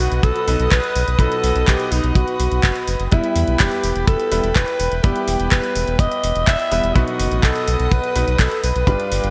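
A breathy, raspy alto saxophone carries the melody through digital delay over a melodramatic, danceable 125 BPM Italo disco groove, with a dry, tight kick up front from 0.2 s, layered electronic house handclaps and hi-hat, a round, deep analog bass with tube saturation, brilliant baby grand piano stabs with audible action noise, and dark, nasal chamber strings holding sustained chords over B and E minor, all set in a lush hall reverb with bright 1980s-style digital polish in this excerpt.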